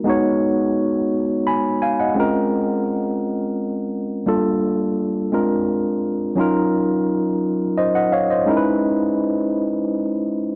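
Yearning and sultry, this slow R&B fragment in 6/8 at 57 BPM, cut from a longer piece, features a lone barky tine electric piano, worn, slightly out of tune and clean, sitting up front as if through built-in speakers, moving through lush chords like G#m9, A#m9 and D#m9 with light reverb and the warbling pitch drift of an old cassette tape, shifting into a new section at 6.4 seconds.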